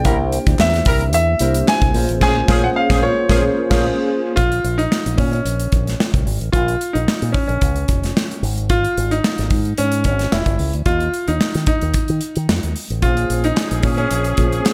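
Polished 1980s jazz-funk pop with a slick, bittersweet mood, this short cut from a longer piece moves at 111 BPM in a lightly swung groove in four. A bright, brilliant concert grand piano carries the melody up front from start to finish, its short sustain and deep low end giving the lines a crisp, present edge. A mellow tine electric piano with analog chorus adds clean accompaniment, joined by a tight, clear horn section with soft attacks, vibrato and tape echo playing a second line; both drop out after the opening passage and return at 13.0 seconds. Underneath, a punchy fingered electric bass shaped by an envelope filter sits bright and direct, while an airy modern drum kit with a punchy kick, medium-tuned snare, hi-hat, crash and gated reverb drives the groove. A crisp, very quiet group handclap appears briefly near the start and again at the close, and the whole band hits a shared accent late in the opening section before the harmony settles into a darker minor passage.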